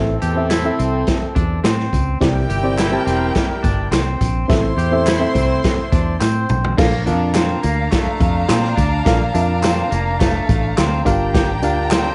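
A horn section, a barky, reedy electric piano with light overdrive, and a punchy, foam-muted fingered bass open this uptempo 1960s-style soul cut together. A twangy, slightly broken-up picked guitar riff through a small old amp joins at once, along with a roomy, distant big-band drum kit with a boomy kick and a medium-tuned snare, plus tambourine and handclaps sitting close and dry in the background. The tight, jazz-style horns add a second line with light vibrato until 6.5 seconds, while a dark, woody studio violin section enters at 2.2 seconds with soft-attack bowing and its own vibrato. A drum fill carries the music into a new section at 6.8 seconds, where the harmony moves from a minor-key opening to a major-seventh colour. The small room gives the danceable groove a close, intimate feel.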